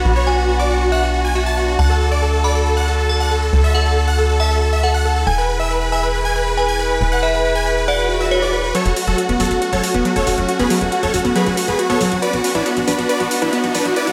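Emotional and euphoric, this uplifting trance excerpt in F# minor drives along at 138 BPM in a straight 4/4, tuned slightly low to A4 = 435 Hz. Huge, lush supersaw chords carry the melody up front with dub echo, while a glassy FM bell sits in the background as a second line, coloured by chorus, phaser, dub echo and a gritty vintage 12-bit sampler texture until 8.7 seconds. Beneath them, a distant chamber string section holds sustained chords with a reedy gut-string tone and light vibrato, and a tight, punchy sequencer bass built from saturated sawtooth and square waves with ring modulation pushes the groove. A very quiet electronic swell arrives at 8.0 seconds, and from 8.7 seconds the build-up begins as a round, chorused analog pluck spins arpeggios and a tape-warm electronic hi-hat, re-recorded in a large room, joins the drive. The chords move from Bm through D and E to F#m, returning to Bm, all set in light reverb and digital ambience.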